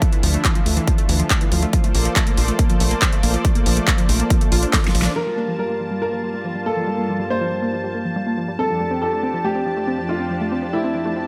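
This driving, emotional uplifting trance excerpt at 140 BPM in G dorian opens with a thick, airy, detuned pad and a punchy sawtooth pluck arpeggio with delay, both pumping to the sidechain. Beneath them sit an up-front electronic kick, an overdriven dance kit with a huge snare, handclaps and hi-hat, and a tight sequencer bass, over chords moving from Dmadd9 to Bbmaj7. A drum fill and band accent close the first part as the kick, kit and bass drop out by 5.1 s, and from 5.2 s a boxy grand piano carries a second line with delay while a filter sweep runs over the pluck through Gm7 and F6, all in light reverb.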